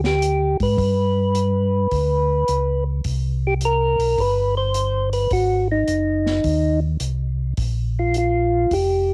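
A percussive tonewheel organ carries the melody, its round, dark tone lit by third-harmonic percussion and a slow rotary speaker, sitting up front over a mellow organ bass line that adds chorus vibrato and key click to its own slow rotary sound. This soulful, greasy soul jazz organ trio excerpt swings at 106 BPM in 4/4, with a vintage acoustic drum kit of punchy kick, medium-tuned snare and hi-hat, its rolled-off top softened by cassette tape. The whole passage has the small-room feel of a home cassette recording, moving through chords from G5 and G to C5, Ab7 and Bb5.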